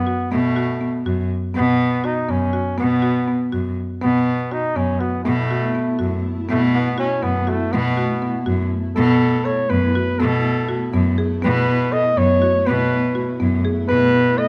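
A warm flugelhorn carries the melody up front in this restless, playful piece of contemporary chamber music in 5/8, its jazz-style line shaded with light vibrato and scooped notes. Beneath it, a buzzing, woody marimba struck with medium hard mallets plays dry, bright arpeggios, while a rich, reedy cello bows the bass in a close, gut-string period style. At 5.2 s, a very quiet granular cloud pad enters with a slow attack and blurred, evolving sustained chords, and a new section begins at 9.0 s, heard within a moderate recital hall reverb.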